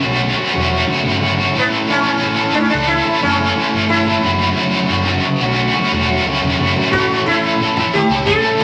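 A biting, overdriven electric guitar opens this hazy, hypnotic psychedelic rock fragment, playing a double-tracked riff up front with a pulsing harmonic tremolo, while a growling picked bass with its own overdrive sits low and punchy in the background. At 1.6 seconds a plectrum-plucked sitar enters with the melody, its buzzing tone and shimmering sympathetic strings adding an exotic sheen over the guitar. The music moves at 90 BPM in a straight 4/4, centred on A mixolydian and shifting between F#m7 and A. A vintage acoustic drum kit joins only at 6.9 seconds, its punchy kick and toms mid-forward yet set back, with a rolled-off top. A wet studio reverb wraps the whole blend in a dreamy, trance-like haze, and the passage is cut from a longer piece.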